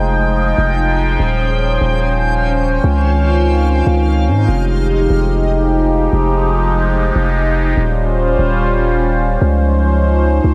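Hip hop in F minor at 146 BPM with a hazy, ethereal half-time feel, this excerpt sets a sweeping, wave-folded resonant pad with chorus and phaser holding bright, evolving chords from Fm9 through Eb13 to Dbmaj9 over a deep, mellow sine 808-style bass that sits up front, while a reversed, granular, detuned texture with its own reverb drifts dreamily above until 4.5 seconds, all in a light digital ambience.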